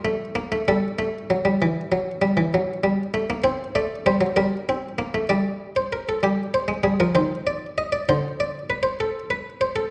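A muted, lute-like buff-stop harpsichord plays alone and up front through this serious, driving baroque-style two-part invention in 12/8, moving from its opening section into a second one at 6.2 seconds, with chords that turn through minor harmonies inside a recital hall's reverberant ambience, in a brief passage cut from a longer piece.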